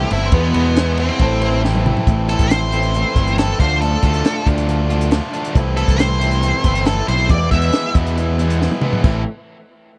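A straight 4/4 pulse at 138 BPM drives this restless, cool indie rock excerpt in A minor. A compact cocktail drum kit keeps a dry, close sound, with dark cymbals, a high-tuned snare, a punchy kick and a couple of drum fills. A growly, up-front picked electric bass anchors the low end. Two overdriven guitars play riffs: one bright and picked, the other a raw garage tone sitting in the background with lush chorus and tape echo. At the start, a very quiet glockenspiel played with rubber mallets adds a mellow, bell-like second line until 2.0 seconds. Present from the opening, a warm octave-fuzz lead guitar with tape echo takes a solo from 2.1 seconds through chords moving from Dm to Am7/C and E, stopping at 7.9 seconds before the phrase settles on Am.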